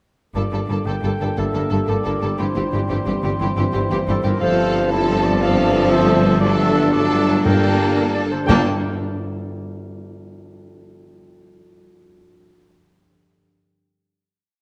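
A lush violin section carries the melody of this adventurous, determined heroic film cue in a swaying 12/8, with a dark cor anglais, a darker, woody second violin section and a clarinet that joins at 1.4 s weaving second lines over smooth viola chords, mellow French horns and bright trombones, while rich, focused cellos, double basses and a distant, roomy tuba hold the bass, a ringing concert harp rocks through broken chords, articulate hard-mallet timpani strike single bass notes from 7.5 s, and the harp rings on alone through the final chord to 10.5 s in a moderate scoring-stage reverb.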